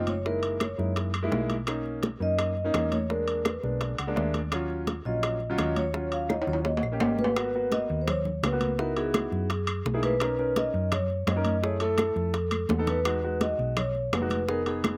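Mellow soft-mallet vibraphone with a slow motor vibrato carries the melody in this fiery, sophisticated Afro-Cuban jazz excerpt at 169 BPM, over an up-front grand piano with slapback echo, a dark, round hollow-body electric bass, bright high-tuned congas, low-tuned bongos, ringing metal-shell timbales and woody claves in the background, moving from Eb minor to G# minor at 7.4 s through rich extended chords, with a piano fill at 3.8 s and a drum fill at 6.3 s in a dry outdoor sound.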